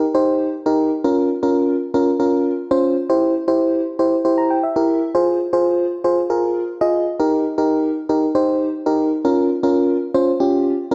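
Bathed in a moderate plate reverb, this melancholic, nocturnal pop fragment at 117 BPM in straight 4/4 features a lone FM electric piano layered with a soft pad, its lush, warbling, vintage tone sitting up front with a chorus shimmer as it moves through Eb, Bbmadd9, C7, Fm and Bbm and slips in a brief fill between 4.1 and 5.1 seconds.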